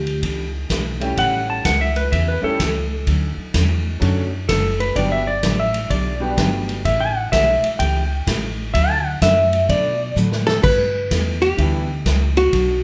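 Cheerful and swinging, this western swing excerpt moves at 127 BPM with a lilting shuffle, opening on a clean, dark lap steel guitar solo over growly pizzicato upright bass, a big-room drum kit with punchy kick, a bright dreadnought acoustic guitar in the background, and a brilliant upright piano that comps until 6.8 seconds before a brief return near the end. After a drum fill at 10.2 seconds, a compressed, hollow-body archtop guitar steps up front with the melody at 10.5 seconds as the chords land on G6. The band sounds like it is playing live together in one large studio room with moderate reverb.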